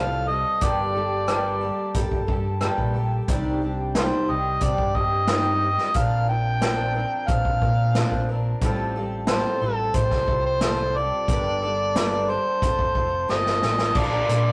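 Wistful and dusty, this short folk rock and heartland rock excerpt moves at 90 BPM in a straight 4/4, drifting through add9 chords from F to G minor, C minor and B-flat before settling on F and B-flat. An overdriven harmonica carries the melody up front, gritty and amplified, with vibrato, tongue slaps and scooped notes in a pop-style solo. Beneath it, a picked twelve-string acoustic guitar shimmers with octave-doubled strings, while a fingered electric bass sounds round, punchy and dark through its amp. A vintage drum kit enters at 0.6 seconds, up front yet rolled-off on top, with dark cymbals, a medium-tuned snare, rim clicks and a punchy kick, and it plays a fill from 13.3 seconds. At 13.9 seconds a bright, crunchy, double-tracked overdriven guitar riff appears in the background just as the music lands on B-flat. The whole take has a rough rehearsal-room character, tube saturation and a moderate stone room reverb.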